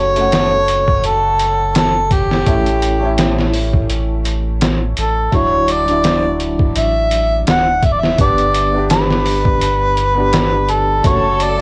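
A swung trip hop groove from a compressed, pitched-down sampler-style kit of thumpy kick, medium-tuned snare and hi-hat enters at 0.2 seconds beneath a round, detuned analog bass, soft felt-muted upright piano chords carrying harmonic tremolo, 12-bit sampler grit and tape echo, and an up-front mellow harmonica singing a smoky, brooding jazz melody with scooped notes and its own tape echo, and a clear bowed string section joins them at 11.0 seconds in this lightly reverberant cassette-recorded excerpt.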